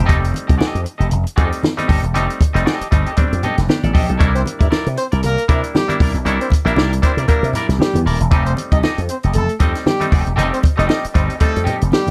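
A growly slap bass run through an envelope filter sits up front in this gritty funk excerpt, driving a 117 BPM groove in 4/4 with a light swing on the sixteenths over F9 and C9 chords. A compact cocktail drum kit, dry and natural with a punchy kick and a high-tuned snare, shares the foreground, while low-tuned congas ring softly in the background. A bright, nasal clav played through a combo amp adds percussive stabs touched with slapback echo, and a clean, twangy electric guitar fills in the accompaniment under a lush chorus. At 4.4 seconds a warm horn section enters with light vibrato, carrying a second line in a pop style. The production is dark and warm with light reverb, giving the cut a gritty, funky character.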